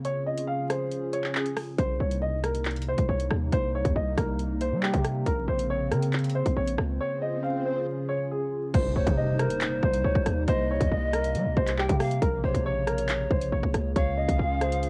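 Cold and ominous, this half-time drill cut moves at 138 BPM in C Phrygian, tuned slightly flat, and sits inside a lo-fi home-cassette sound with vinyl crackle and a dry room. A dark, mellow grand piano carries the melody through a cassette-tape haze and low-pass filter, while a deep, detuned analog pad holds sustained chords beneath it, warbling through chorus and phaser with a slow attack and long release. The electronic drill kit sits up front with a hard-clipped kick, metallic hi-hats, handclaps, rim clicks and crash, also tinted by cassette tape. After a brief break, a punchy, heavy 808-style bass with a sine body and noise layer hits at 1.8 seconds, following a progression that cycles through Db, Cm7 and Bbmadd9. A background electronic swell rises from 6.8 seconds into an impact that opens the second section at 8.7 seconds, and shortly after, an airy, expressive pan flute with crisp chiff and vibrato adds a second line through tape echo until the cut ends.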